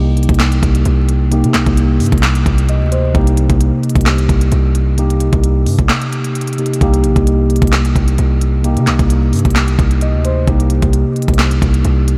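Trap hip hop in a dark, melancholic half-time groove, cut from a longer piece, where a mellow tine electric piano bathed in lush chorus sits up front over a hard-hitting, punchy 808-style bass with a fast attack and decaying tail, while a produced trap kit of knocking kick, sharp snare, crisp hats and handclaps enters at 0.2 s, the piano slips in a fill at 2.5 s before a break at 5.9 s, and the dreamy mix is soaked in cathedral reverb and vinyl crackle over a lingering Cm7.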